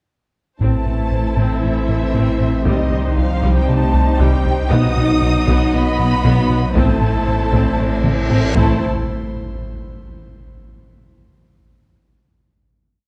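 Driven by a straight 4/4 pulse at 117 BPM, this vast, relentless cinematic cue in A minor blends orchestra and electronics: a rubbery square-bass ostinato, a round sub-bass drone, a heavy big-drum ostinato on very quiet taiko drums, and a driving bass ostinato from the woody double basses lay the foundation; the viola section adds its own driving ostinato; a lush symphonic violin section carries the expressive, vibrato-rich melody while the rich cello section doubles the tune at the octave and a distant chamber violin section adds a second line; a dark French horn section, a clear trombone section and an airy, breathy pad (entering at 1.3 seconds) sustain the chords through Am, Cm and B; and a reverse cymbal arriving at 7.4 seconds leads to a drum fill and a low electronic impact at 8.8 seconds, all set in a spacious, dark, warm scoring-stage reverb.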